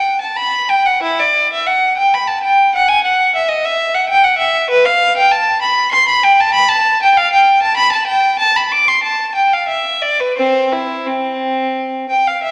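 A single bowed violin opens at once, rich and smooth with vibrato, playing a radiant, flowing baroque-style suite movement in 3/4 at 85-100 BPM with a rubato feel. It starts in G major and moves to C major at 4.7 s, the even tone staying smooth at the top of its range and sitting up front in a reverberant recital hall. A vinyl crackle runs beneath this brief excerpt cut from a longer piece.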